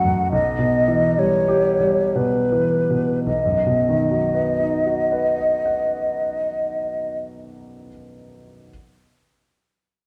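In a flexible three-four time with a rubato feel, the music drifts between 51 and 76 BPM and slows over its first 3.3 seconds. This brief, serene passage from a longer romantic classical piece for flute and grand piano sits in B major. The concert flute carries the lyrical melody with an airy, hollow tone, gentle vibrato and a soft attack, placed up front. The concert grand piano accompanies with a clear, smooth, slightly vintage sound and a deep bass, also close and present. The harmony rests on E minor over B before settling on B major as a second phrase begins at 3.3 seconds. The flute falls silent at 7.2 seconds, and the piano rings on alone until 8.7 seconds, all in a reverberant recital hall.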